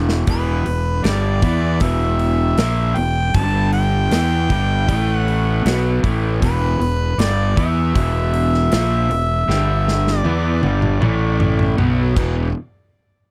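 A dry, close 1970s-style studio sound frames this heavy, gritty blues rock and southern rock power-trio excerpt in E minor at 78 BPM, where a raw, lo-fi, double-tracked overdriven guitar riff and a dark, round fuzz bass sit up front over a big acoustic rock kit with a punchy kick and bright cymbals, a smooth-topped overdriven harmonica carries the melody, and a drum fill from 9.5 seconds drives the Em, G5 and A5 changes toward a closing B5 and E5.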